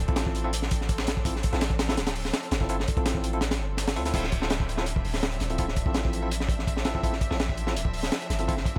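At a straight 166 BPM in 4/4, a crunchy breakbeat drum kit drives this atmospheric, raw drum and bass and jungle excerpt in D minor, its punchy kick, high-tuned snare, dark cymbals and hi-hat sitting up front with a saturated, rolled-off top. A second, very quiet sampler-style breakbeat kit adds compressed, tape-warm hi-hat and medium-tuned snare from 0.1 to 4.1 seconds, and the kick drops out between 3.4 and 4.1 seconds before the groove returns. Underneath, a deep, sine-like 808-style bass holds long notes between D1 and D2, each with a fast attack and a decaying tail. A bright symphonic string section sustains distant, bowed chords with light vibrato in the background, colored by vintage 12-bit sampler grit, opening on a Dm9 harmony. Bell-like tine electric piano stabs ring clean and direct in a mid register, carrying the same 12-bit grit plus a dub echo, all within a small room ambience.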